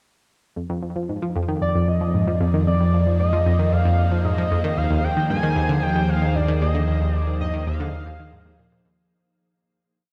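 A dark, warm production bathed in a huge ambient reverb opens this short, complete piece of sequencer-driven space music in F dorian, moving at 114 BPM in a straight 4/4 with a cosmic, expansive mood. An up-front analog pluck sets things going at 0.6 seconds with a repeating eight-step sequence in the low register, its round, nasal sawtooth tone carrying a noise layer and a fast filter pluck, colored by chorus, phaser and delay. Beneath it an analog drone holds a mellow, sustained root bass, its pulse-width modulation and moving notch giving the tone a slowly evolving character under chorus. An evolving wavetable pad fades in with slowly shifting chords, detuned and morphing sine tones with ensemble chorus and their own reverb, moving from Fm7 to Ebsus2 at 4.8 seconds. High above, a shimmering, retro pulse-width lead sings a free melody with vibrato and portamento, its vintage warble spread by chorus and delay, before the piece fades out from 6.2 seconds.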